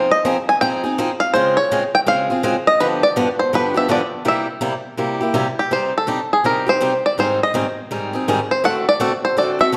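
A swung eighth-note pulse at 165 BPM in 4/4 drives this brief, bittersweet jazz passage, cut from a longer piece and full of virtuosic flair. A bluegrass banjo, played with fingerpicks, carries the melody from start to finish with a twangy, percussive voice that sits up front. Beside it, a picked swing-style acoustic guitar supplies accompaniment with a bright, boxy tone, also close and present. The harmony moves through Fm7, Dbmaj7, G7 and C7 before settling into C minor at 5.7 seconds, then passes through Abmaj7 to D7 as the clip ends at 9.8 seconds. A recital hall reverb lends the dark production a lingering, roomy tail.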